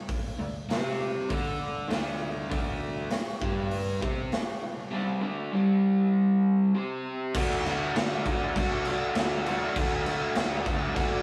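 A straight 4/4 beat at 99 BPM from a raw garage drum kit, with punchy kick, medium-tuned snare, hi-hat and crash cymbal sounding gritty and up front in a bright stone room, drives this rowdy garage rock fragment in D mixolydian, where a crunchy, double-tracked, picked guitar riff sits forward over a dark, round, overdriven hollow-body bass in the background, the whole thing carrying a rough rehearsal-room feel with saturation and small-room ambience.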